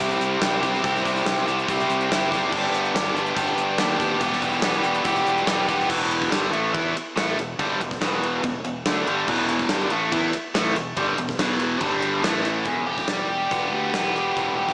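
A driving, brooding classic rock excerpt built on a biting, double-tracked overdriven guitar riff up front, with a growling fingered electric bass underneath and a gated 80s drum kit joining at 0.1 seconds, whose tight kick, medium-tuned snare and bright crash, ride and hi-hat sit in an airy, polished room, all wrapped in a lush hall reverb that gives a big arena sound.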